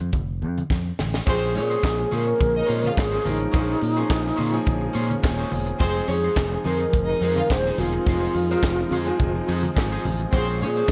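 A breathy, mellow alto flute carries the melody in this glamorous, driving disco excerpt, its soft attack, expressive vibrato and close-miked sound touched with tape echo. At 106 BPM in straight 4/4 and Bb minor, the cut opens on an F chord with a punchy, round fingered electric bass and a tight funk drum kit up front: a dry, high-tuned snare, tight kick, hi-hat, handclaps and crash cymbal, all washed in gated reverb. Very quiet, low-tuned congas with a vintage, band-limited tone sit underneath. A drum fill from 0.7 s leads into the change at 1.3 s, where the harmony settles on Bbm9 and the flute enters with the rest of the band. A clear studio violin section adds a smooth, evenly bowed second line, a slightly broken-up, twangy picked electric guitar and a warm baby grand piano with long sustain fill out the accompaniment, and a dark, woody string section holds lush, very quiet sustained chords. 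The mix is dry, with little room sound.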